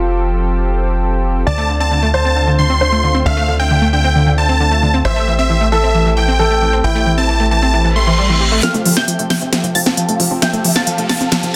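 Euphoric and soaring, this uplifting trance excerpt in F major drives along at 134 BPM. It opens on a grand piano second line roughened by vintage 12-bit sampler grit and tape echo, set over a thick, airy pad with chorus and a tight, punchy sequencer bass. At 1.5 seconds, huge, detuned supersaw chords carry the melody up front alongside nasal, bright unison pluck arpeggios, and a reverse cymbal and riser arrive at 7.9 seconds before a build-up at 8.6 seconds brings a layered electronic drum kit fill with a cracking snare and smooth hats, filter sweeps on the supersaws and pluck, and a round, evolving analog pluck high above.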